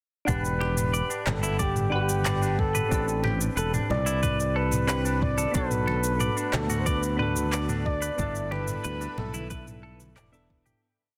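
A soft, round electric-piano-like synth opens at 0.2 s with held, rootless chords and syncopated pushes, shaded by chorus, a low-pass filter and tape echo. Almost at once a relaxed sunset chillout groove settles in at 91 BPM in E minor, moving through Em7, Am11, Bm7 and G69. A mellow, close-miked flugelhorn carries the lead with vibrato and motif-based jazz phrases, while a clean hollow-body electric guitar picks a 16-step arpeggiated sequence, both touched with tape echo. Underneath, a bright, growly fingered bass sits up front with long gliding notes, and a soft overdriven electronic kick joins a light lounge beat of shaker, low tom and claps that also carries overdrive, with very quiet, distant congas in the background. An airy, breathy pad with chorus and phaser enters at 6.4 s with sustained chords just before the fade-out begins at 7.3 s, all set in light reverb and digital ambience under a dense, heavily limited modern master.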